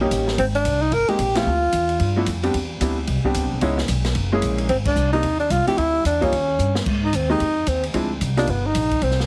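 A mellow, close-miked tenor saxophone with light vibrato and scooped notes leads this warm, sophisticated swing-and-bop excerpt, over a woody, slightly detuned upright piano, a thumpy pizzicato upright bass, and an airy drum kit with dark cymbals and a boomy kick, all set in light reverb with a heavily compressed radio sound, with band accents at 1.3 and 4.8 seconds and a drum fill at 6.6 seconds leading into the saxophone solo at 6.9 seconds.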